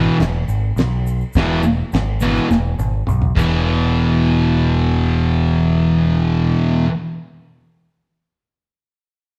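A thick, double-tracked fuzz guitar and a growling, overdriven picked bass open together at 104 BPM in straight 4/4, stomping out a rowdy, swaggering garage rock riff in E major in this short cut from a longer piece. A cloth-damped drum kit joins at 0.2 s with a fat snare, tight kick, toms and dark crash cymbal, its dry, thuddy sound rolled off at the top, while a grainy egg shaker sits close but in the background. The drums break into a fill from 2.5 s and stop by 3.5 s, just as the harmony moves from an E chord to an E5 power chord and the riff shifts into a new section at 3.7 s. The bright, distorted guitar stays up front throughout, lasting until 6.9 s, a little past the bass. It sounds like a duo or trio playing live in one stone room, with a moderate reverb giving the band a raw, roomy edge.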